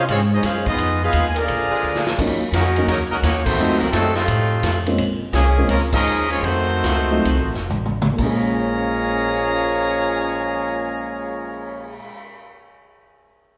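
Bright, up-front trumpets carry the melody of this dramatic, brassy big band swing excerpt over a clear trombone second line, mellow saxophone chords that drop out at 2.2 s, and growly pizzicato upright bass, while a roomy, distant drum kit with a boomy kick adds fills, a dark, vintage grand piano joins at 2.2 s, and the reverberant hall band slows down from 5.0 to 8.2 s.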